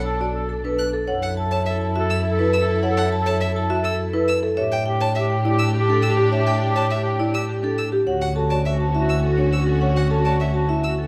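In a straight-feeling 3/4, this propulsive, hypnotic stretch of minimalist classical pattern music, cut from a longer piece, sets a ringing, metallic vibraphone melody over buzzing, woody marimba arpeggios and high, vibrato-laden violin arpeggios, while a bright solo clarinet carries a second line, a lush symphonic string section holds sustained chords through Bm7, F#m7, A7sus4 and Dmaj7, and an up-front, bowed double bass anchors the low end inside a moderate large-studio reverb.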